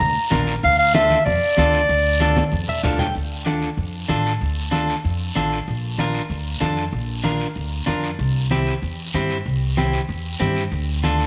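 Passionate and driving, this cumbia excerpt in D minor moves at 190 BPM in a straight 4/4, with a clear, smooth-topped clarinet carrying the classical-style solo melody up front only until 2.8 seconds, over woody pizzicato upright bass, low-tuned thick-skinned congas played with soft hands, and a raspy guiro. An electric guitar at the edge of break-up, picked and compressed, enters at 0.3 seconds as accompaniment, and a drum fill at 2.2 seconds is joined by a clean electric guitar fill at 2.5 seconds, both leading into the second section at 3.2 seconds. The chords move from Bb through Dm and C before returning to Dm, all set in a moderate plate reverb.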